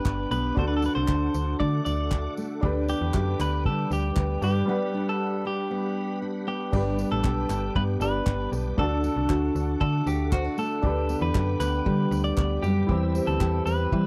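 A snappy, metallic FM bass sits up front in this easy-going, carefree acoustic pop excerpt in G major at 117 BPM, alongside a dark, picked steel-string acoustic guitar with audible finger squeak and an airy unplugged kit with a tight kick, handclaps, tambourine and crash played with bundle sticks. A clean, compressed electric guitar carries the melody over a soft felt-muted upright piano with audible action noise and a reedy, bright tonewheel organ with key click, chorus vibrato and slow rotary speaker, both tucked in the background. The dry, close 1970s-style studio sound frames two passes through the same section, with a break from 4.7 to 6.7 seconds.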